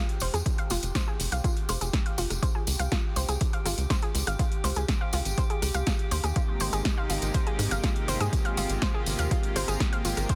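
Progressive house at 122 BPM in a straight 4/4, this short excerpt from a longer piece feels expansive and dreamy, moving from Fm to Db and then to Abadd9. An overdriven deep house kit of rim clicks, snare and metallic hi-hats opens the excerpt with a jingly, close tambourine, and a punchy, up-front electronic kick anchors the groove from 0.5 seconds. Beneath them a tight sawtooth-and-square sequencer bass drives forward with fast-attack filter plucks and sidechain pumping. A round, nasal analog pluck spins arpeggios through chorus, cassette-tape colour and tape echo, while a glassy texture of drifting sine overtones floats high in the background with its own chorus and reverb. At 6.4 seconds a lush, detuned supersaw pad enters with soft-attack sustained chords, pumping against the kick in a dense, heavily limited mix with little room reverb.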